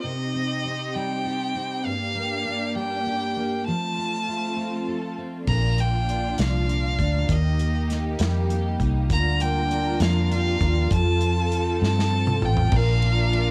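A home cassette recording with light reverb gives this heartfelt, romantic pop ballad a soft, tape-worn intimacy. Moving in a gentle six-eight at 66 BPM in Bb major, it opens with a rich, focused solo violin singing the melody up front with vibrato, over a double-tracked, full-bodied picked steel-string acoustic guitar and a close studio string section holding smooth, sul tasto chords. At 5.5 seconds a dark, round, foam-muted electric bass arrives up front alongside an acoustic studio drum kit with bright cymbals, a medium-tuned snare and a punchy kick. The harmony moves from Cm through Gm and F before settling into Bb, Eb and Bb6/D. A drum fill at 11.8 seconds leads back to Bb, and this excerpt, cut from a longer piece, ends at 13.5 seconds.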